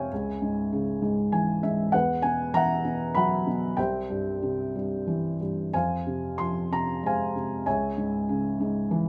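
Classical solo piano in a lyrical, cool and moody vein, this short fragment of a longer piece moves in a rubato 3/4 at 90 to 100 BPM on a felt-muted upright piano that sits up front with a dark, intimate tone and the thick hush of its felt. The piano spans the range from C2 to C6 and adds a brief fill from 1.0 to 1.9 seconds as the harmony drifts through Dbm, Esus2, C and Fm before returning to Dbm. Light reverb gives the close, mellow sound a touch of room.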